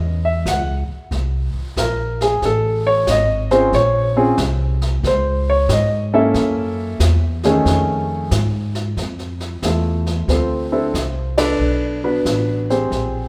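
Bathed in the lush reverb of a recital hall, this playful, warm swinging jazz piano trio excerpt features an up-front baby grand piano taking the melody as a solo through the first 9 seconds over woody pizzicato upright bass, while a brushed drum kit with dark cymbals and a boomy kick enters at 0.5 seconds and joins the band in a brief accent at 11.3 seconds as the harmony moves through rich extended and altered chords.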